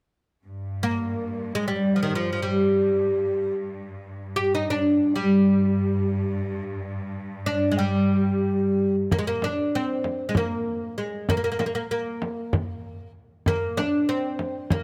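A clear, focused cello section opens this makam ensemble recording at 0.4 seconds, its bowed ensemble tone carrying vibrato as it holds a low drone on G2. At 0.8 seconds the oud enters up front with the melody, its fretless, woody voice and plectrum-plucked double strings marked by a short slapback echo. The soulful, longing line moves between Eb3 and G4, and the oud sits louder in the balance than the quieter cello drone. At 9.1 seconds a second section begins as a large, deep frame drum arrives close and up front, played with soft hands, while the cello section falls away and the oud carries on above the drum. Close, detailed microphones and a light reverb keep the sound intimate, and the recording is cut from a longer piece.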